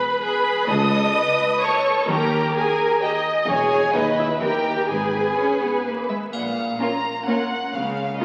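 Magical and mischievous, this whimsical orchestral film cue in a three-time feel opens with a warm, up-front violin section singing the melody over a second violin line bending with expressive portamento and a lush, focused viola accompaniment. At 0.7 s a bowed low end enters, with a clear double bass section and an intense cello section in the background alongside a dark tuba that drops out at 5.3 s. A close, dry triangle and a mellow French horn section with soft attacks join near the end, all wrapped in a wet concert-hall reverb and the crackle of a very old 78 rpm record.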